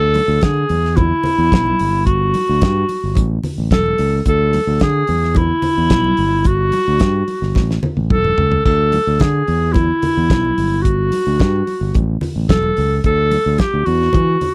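Disco with a celebratory, glamorous mood, cut from a longer piece, led by a clear, punchy clarinet playing a forceful jazz-style solo with light vibrato over a growly, overdriven fingered electric bass. A damped 70s drum kit with a fat snare, tight kick and dark cymbals sits up front alongside them, plays a fill from 7.6 to 8.7 seconds, and bright, thin-skinned congas sit in the background. The dry, close 1970s-style studio sound carries a chord loop of D5, E5, G5 and A.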